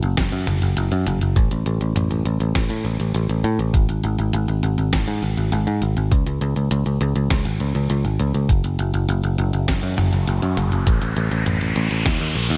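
A growly, up-front picked electric bass opens this nocturnal, driving synthwave excerpt at 101 BPM in a straight 4/4, sounding alongside a detuned 8-bit digital drum machine that supplies hi-hat, a medium-tuned snare and toms. The bass has a foam-muted, direct-and-amped character and sits in a low register. An electronic kick drum with a thumpy, sampler-style punch enters at 0.2 seconds and holds the pulse until 12.2 seconds. Both drum parts have a tape-warmed quality, as though re-recorded in a small room, and the whole sits in a light reverb. At 9.4 seconds an electronic riser enters and carries through to the end of the clip.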